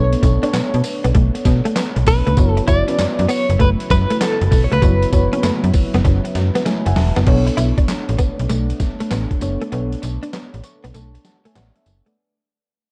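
A swung sixteenth-note new jack swing groove drives this confident, punchy R&B piece, with a gritty, pitched-down, sampler-style drum kit of thumpy kick, snare, hi-hat, handclaps, tambourine and crash sitting up front beside a snappy, metallic slap-like FM bass. A clean, direct-recorded electric guitar plays a short tremolo melody until 5.6 s, while a second, bright guitar with ensemble chorus carries a riff over a round, warbling FM electric piano with chorus and tremolo and a very quiet, shimmering pulse-width pad holding sustained chords. In the dark, dry mix, a drum fill and an electric piano fill lead into the closing section at 7.3 s, where the music fades out through a break that begins at 9.7 s.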